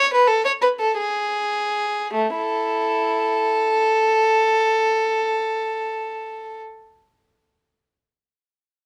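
A lone bowed violin, reedy and gut-strung with light vibrato, played in period style and set up front in a dry, close sound, opens this radiant, dance-like baroque-style suite movement in A major and 6/8, slowing through its first 2.1 seconds before moving into a new passage with free rubato at roughly 49-63 dotted-quarter beats per minute, in a 6.6-second fragment cut from a longer piece.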